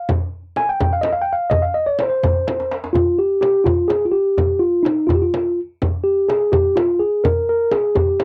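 A mellow tine electric piano opens this short cut from a longer Persian modal ensemble piece, carrying a longing, melancholic melody between Eb4 and Ab5. It sits clean and up front, direct in tone, as tombak and frame drum join at 0.1 seconds beneath it in a straight 6/8 at 84 BPM, counted in dotted quarters. The tombak, played with soft hands, gives a deep, vintage, band-limited acoustic body, while the small frame drum, also softly played, sounds bright and close. A drum fill from 2.5 to 3.0 seconds leads into a new section that carries the trio to the end at 8.2 seconds. The sound is that of a dry, close 1970s-style studio with light reverb, the electric piano clearly leading over the two quieter drums.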